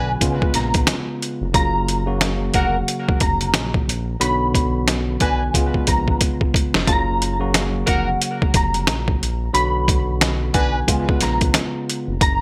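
Light digital reverb frames this soulful, nostalgic boom-bap hip-hop excerpt at 90 BPM in F# major, where a gritty, pitched-down sampler-style drum kit with a thumpy kick sits up front from 0.2 seconds and breaks into a fill at 5.5 seconds, a smooth gliding synth bass with vibrato and portamento holds the low end, a clean tine electric piano with cassette-tape color carries the C#7, F#maj7 and Bm chords, punchy horn stabs with delay drop out at 10.8 seconds, and a dark, fingered electric guitar with chorus and delay plays the melody.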